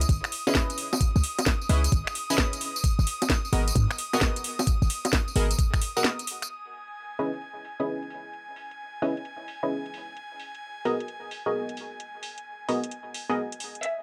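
The sound is close and dry-ish, set in a moderate studio room, with the drums and stabs pushed up front in this moody, late-night slice of swung two-step UK garage cut from a longer piece. A knocking electronic kick and a tight, sine-based 808-style bass with a noise layer drive the opening, with the bass dropping out by 5.5 seconds. The garage kit layers a cracking snare, metallic hi-hats, bongos, finger snaps and tambourine, all tape-toned, low-passed and wrapped in small-room ambience. Punchy sawtooth-and-square chord stabs with a sub octave, 12-bit sampler grit, chorus and tape echo move between C#m9 and G#m9, and a filter sweep with a moving notch runs across them after a short break at 6.0 seconds. Behind it all sits a soft, breathy pad of detuned triangle and sawtooth tones, chorused and pumping against the sidechain. At 13.8 seconds a lush, bowed symphonic violin section enters with vibrato on a single high note.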